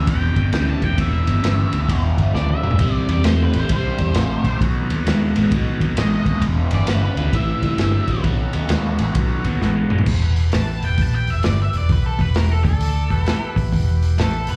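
Heard through a club PA with the venue's reverb hanging around it, this gritty, heavy blues rock and southern rock power-trio passage swings at 132 BPM in E minor. Up front, a muffled, lo-fi vintage drum kit with dark cymbals and a tight kick sits beside a round, foam-muted fingered bass. A bright, double-tracked crunchy guitar plays the riff through phaser and slapback echo until 10.1 seconds. Behind them, an overdriven tonewheel organ holds thick chords through a slow rotary speaker, while a distorted octave-fuzz lead guitar carries the melody throughout. At 10.1 seconds the lead guitar moves into a solo over Em and D5 as the riff guitar stops, with drum fills earlier marking 2.3 and 9.6 seconds in this cut from a longer piece.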